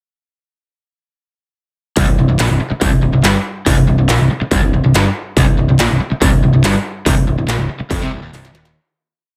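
At 2.0 seconds the full band crashes in together on a C minor riff: an aggressive, menacing hard rock piece at 142 BPM in a straight 4/4. Up front, an electronic, produced industrial drum kit drives a big rock groove with a distorted kick, clanging snare and smooth hi-hats, re-recorded in a large room. Two overdriven picked electric guitars sit in the background playing a low single-note riff: one a bright cranked stack, the other a warm hollow-body semi-hollow. A bright, growly, punchy picked bass played direct pushes driving eighth notes that double the guitar riff. The mix carries light reverb and a dense, heavily limited modern master. The piece begins fading at 7.1 seconds, and a drum fill arrives at 8.3 seconds as it closes.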